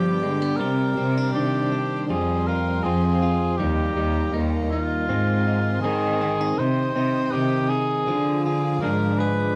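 From the first second, a mellow cor anglais sings the melody up front with light vibrato over a veiled, bowed cello bass played con sordino with portamento, in this heartbroken, reflective folk-pop ballad in C minor at 80 BPM. A bright, twangy clean electric guitar recorded direct picks the accompaniment, while a second electric guitar through a small old amp adds slightly broken-up, lo-fi arpeggios with tremolo in the background, and a chamber string section holds soft sul tasto chords. The dry, close 1970s-style studio sound frames this short cut from a longer piece as its harmony moves from a brief G into Cmadd9, then through Fsus2, Ebadd9, Abadd9 and Cm to a closing Ddim.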